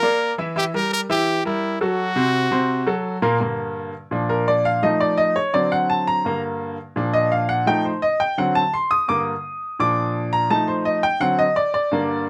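A brilliant, close-miked trumpet states a pop-style melody until 3.0 seconds over a bright baby grand piano with long sustain, which then takes a solo from 3.4 seconds to the end of this fiery, passionate Latin excerpt in G minor at 169 BPM, cycling through Gm, Bb, F7 and D7 in a detailed, lightly reverberant sound.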